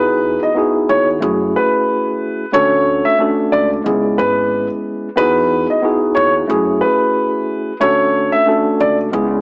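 A woody upright piano with audible action noise carries an intimate melody over a mellow, clean tine electric piano and a pizzicato upright bass from the start, cycling through Emaj9, F#m9, Dmaj7 and C#m7 in this confident, soulful boom-bap hip-hop cut with a swung feel, the two keyboards given a cassette-tape tint, the piano stopping at 9.0 seconds, all set in a moderate spring reverb with a small-speaker, home-cassette sound.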